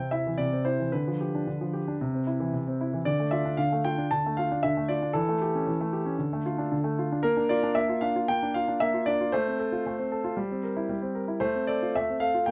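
Close, detailed microphones and a light reverb put a clear concert grand piano up front, its deep bass and long sustain heard in natural, intimate detail. This is a short passage cut from a longer classical-period piano sonatina, elegant and cheerful in character, moving at 114 BPM in a straight 4/4. The piano plays solo throughout the 12.5 seconds, spanning C3 to A5. The harmony opens around C with a G7/D and then turns to D minor and an A7/E. At 7.2 s it settles into F major through Bb, F/A and C7/G before arriving on F/A at 11.4 s.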